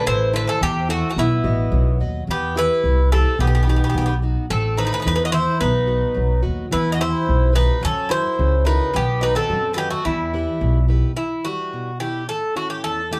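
Greek folk in a bittersweet, moody 2/4, cut from a longer piece, where an up-front bouzouki with warm, picked double strings carries the melody over a brighter, metallic second bouzouki line that drops out at 10.8 s, a boxy plugged-in steel-string acoustic guitar with audible finger squeak, and a woody, growly pizzicato upright bass, the ensemble set back in a small, reverberant room.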